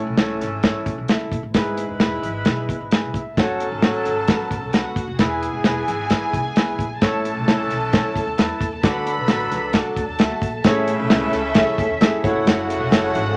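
Uptempo 1960s-style soul with a warm, uplifting mood, this short passage is cut from a longer piece and moves in a straight 4/4. The drum kit sits up front with a dark, rolled-off top, a tight kick and a medium-tuned snare, while very quiet congas add a thick-skinned, compressed, saturated color beneath it. Woody pizzicato upright bass and an intimate grand piano with long sustain and audible action noise carry the accompaniment, and the piano slips in a fill at 2.5 seconds. A clear horn section with light vibrato holds a second line from the start, joined at 3.4 seconds by a close, bowed string section played sul tasto with a soft attack and smooth top. At 10.7 seconds the harmony turns to richer seventh chords as a new section begins, all set in a moderate studio reverb.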